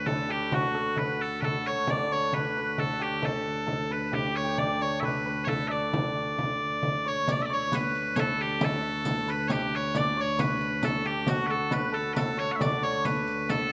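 Festive and ancient in spirit, this medieval dance moves at 134 BPM in a straight 3/4 in D major, with piercing bagpipes carrying the melody up front while a shimmering hammered dulcimer rings out a second line alongside them. A bowed viola da gamba holds a low D drone with light vibrato and an airy bow, and a small, bright frame drum keeps the dance going, joined at 7.3 seconds by the background jingles of a riq as the opening section repeats. Close, detailed microphones catch every part inside a recital hall's moderate reverb, and the passage is cut from a longer piece.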